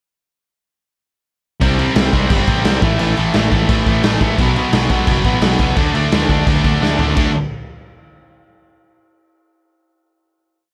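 Energetic and rowdy, this short punk rock piece charges in at 1.6 seconds with three distorted guitars, a scooped, compressed one up top and a double-tracked high-gain one and a sludgy overdriven one behind it, all driving eighth-note power chords over fuzz-laden picked bass and a punchy, up-front garage drum kit with a dark, rolled-off top, before a drum fill at 6.8 seconds leads into a final chord ringing from 7.2 seconds in a dry mix.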